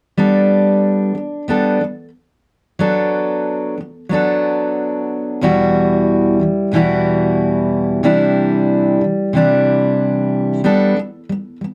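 A pop excerpt with an easy-going, sunny mood, this short passage features a fingerpicked steel-string acoustic guitar playing alone from 0.2 seconds to 11.7 seconds. The jumbo-bodied guitar sounds full-bodied and warm, sitting up front in the mix and spanning from its low strings up into its upper register. Its harmony moves through open, colorful chords, Gadd9, D6/F#, Emadd9 and Cadd9, before returning to Gadd9 as a new section begins at 10.6 seconds. The straight, unhurried pulse gives the playing a relaxed, steady feel. A moderate small-room ambience adds a touch of natural space around the instrument, and the passage is cut from a longer piece.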